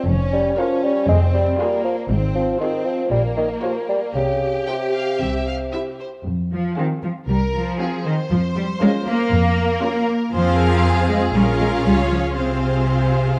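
A straight 4/4 pulse at 118 BPM drives this playful, mischievous film cue in F minor, where a lush, expressive violin melody and a focused second violin line ride over smooth, distant violas, up-front cellos and a dark double bass section with portamento, while a mellow bassoon adds quirky accompaniment until 6.0 seconds, all set in a moderate scoring-stage reverb.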